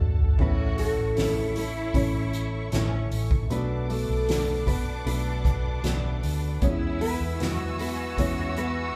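A soft-mallet drum fill opens this 9-second passage from a hopeful, heartfelt pop ballad in A major, moving at a straight 77 BPM in 4/4, before the melody and a cello line join at 0.4 seconds. The kit sits up front with a boomy kick and fat snare, while a foam-muted vintage electric bass supplies a round, punchy low end. A mellow, woody upright piano carries the accompaniment, and a fingerpicked steel-string acoustic guitar adds very quiet, bright arpeggios with a full-bodied ring. The melody comes from a thumb-plucked nylon-string guitar with a classical, warm tone, joined by a second line from a clear, smooth cello section that sounds distant. High above, a lush, dark string section holds sustained chords with vibrato and a soft attack as the harmony moves from A to Bm7 and then E. The whole band plays live together in a small room with a moderate ambience.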